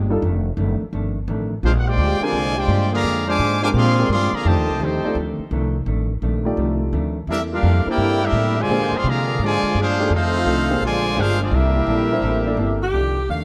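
Swung eighths at 170 BPM in 4/4 drive this brassy, swinging big band excerpt, with a woody, thumpy pizzicato upright bass up front, while a warm grand piano and a dark, clean hollow-body electric jazz guitar sit in the background over F13, Bb13 and C13 chords. A bright, tight trumpet section with light vibrato carries the melody from 1.6 s and returns at 7.3 s after a break, over a soft-attacked trombone section playing a second line, until a clear saxophone section takes the melody at 12.8 s just as the cut ends. A moderate echo chamber reverb surrounds the ensemble, and lossy compression artefacts are audible throughout.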